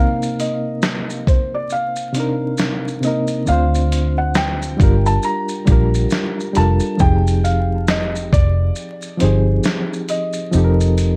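Vinyl crackle and light reverb frame this melancholic, hazy lo-fi hip hop fragment at 68 BPM, with swung 16ths over Cm9, Dm7, Gm9 and Fm7 chords. A felt-muted upright piano carries a soft, mellow, intimate melody with tape echo, while a reedy, bright electric piano with fast tremolo plays accompaniment, and a gritty, compressed sampler-style kit of hi-hat, shaker, thumpy kick and fat snare comes in at 0.2 seconds. After the opening break, a dark, round, foam-muted electric bass enters at 3.5 seconds, punchy and up front, and the passage moves into its second section at 7.0 seconds.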